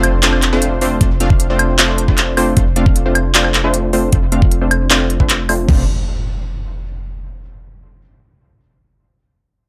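Bright and playful, this half-time future bass excerpt in F major at 154 BPM rides a single F6 chord, carried by a punchy, detuned supersaw stab riff with sidechain pumping, digital delay and a low-pass filter sweep, over a deep, boomy 808-style bass that also pumps. A trap drum kit of crisp hi-hats, handclaps and woodblock sits up front with overdriven grit. After an electronic impact, a dubstep kit with a knocking kick and crash cymbal joins at 1.0 seconds, and a second impact arrives at 5.7 seconds, all in light reverb.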